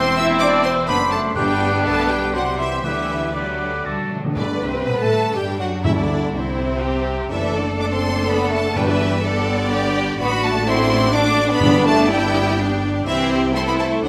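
Lively and spirited, this quick classical-period movement for symphony orchestra moves in a lilting three with a rubato feel, and it is cut from a longer piece. A rich, expressive violin section carries the melody with vibrato, while a second violin section sits in the background on a supporting line, and a focused viola section with a smooth top fills in the accompaniment. Clarinet, flute and oboe add brief second lines in the opening seconds, the bright, soft-attacked clarinet and pure, crisp flute tucked behind the warm, lightly vibrato oboe, before all three drop out around 4 seconds. A horn section holds sustained chords underneath throughout, and a clear, even cello section joins the double basses on the bass line. Round, soft-mallet timpani on calf heads enter at 1.4 seconds, play a fill just before the second section begins at 4.4 seconds, and return in short touches later on, all set in a generous scoring-stage reverb.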